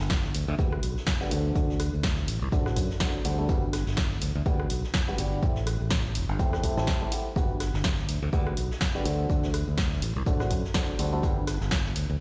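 A bright, growly fingered electric bass sits up front with a sidechain pump in this euphoric, feel-good piano house excerpt with a swung 16th-note feel, alongside a punchy electronic kick, a punchy analog drum machine playing hi-hat, rim click and snare, a distant, roomy brushed jazz kit in the background, and a clear, polished grand piano riff from 0.6 seconds with a low-pass filter, tape echo and its own pumping, all heard through a big sound system in a bare stone room.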